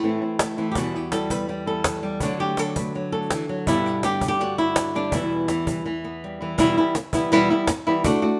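A fiery, passionate flamenco passage drives along at 165 BPM in a straight 4/4, cut from a longer piece and set in E minor. A fingerpicked flamenco guitar carries the melody up front, ranging from E2 to B4 across the full 8.4 seconds, while a second, quieter fingerpicked guitar adds stabs beneath it until 6.6 seconds. A snappy cajon with snares enters at 0.4 seconds, struck with hard hands and sitting close, dry and up front. The harmony moves from Am to Em, D, G and back to Em, with a break at 5.9 seconds before a brief closing section from 6.6 seconds where the lead guitar and cajon carry on. The guitars have a warm acoustic tone, and a moderate stone room reverb gives the performance a sense of space.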